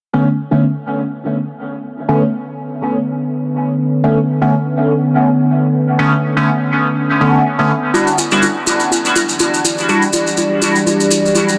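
Juicy, warbling polysynth stabs with chorus, phaser, dub echo and a filter sweep open this deep, meditative dub techno excerpt at 0.1 seconds, joined at 2.4 seconds by a dark, moody detuned pad with its own filter sweep, and at 7.9 seconds, as the harmony moves from Bm9 to Em9, dry electronic congas with dub echo and grainy up-front maracas arrive, all within a huge ambient reverb and a dense, heavily limited master.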